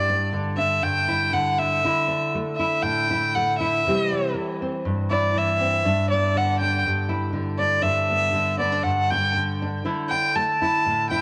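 Joyful and warm, this short highlife excerpt cut from a longer piece sets a rich, reedy violin with light vibrato and a gut-string, period-style tone, bowed up front with tape echo, over a dark, woody nylon-string guitar fingerpicked in a full-bodied classical manner with old strings. The violin carries the melody as a solo across the full 11.2 seconds while the guitar supports it beneath chords moving from G5 through Dsus2, C and G6. A lush hall reverb surrounds the pair, and the home cassette recording leaves a faint mains hum in the background.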